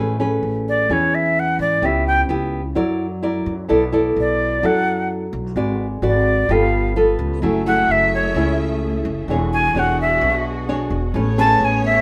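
Moderate studio reverb frames this relaxed, breezy bossa nova excerpt in A major at 129 BPM, where fingerpicked nylon-string guitar with audible finger squeak and a woody, growly pizzicato upright bass lay the foundation beneath a breathy, up-front jazz flute that takes the melody from 0.7 seconds with crisp chiff and expressive vibrato, and a lush, bowed symphonic string section slips in with soft-attack sustained chords at 7.4 seconds.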